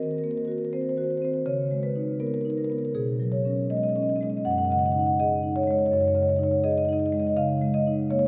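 Reflective and hypnotic, this brief contemporary classical excerpt for solo marimba drifts at a rubato 81 BPM in 4/4, the soft-malleted instrument sounding mellow, round and close-miked up front across a range from Gb2 to Gb5 as it moves through Ebm6, Dbsus2, B69 and Gbsus2 harmonies, while the vast, echoing space around it adds a long, wet cathedral reverb.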